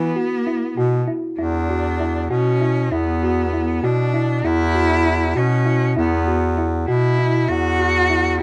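A focused, bowed cello sings a clear melody with vibrato over a round, tine-like synth pluck tracing chorused arpeggios and a bright bass clarinet carrying the bass line up front, all from the first moment of this pensive, hypnotic chamber piece in 5/8 at 196 BPM counted in eighths, its harmony moving from E5 to a rootless Dadd9/E at 7.5 seconds within a dark production touched by light reverb.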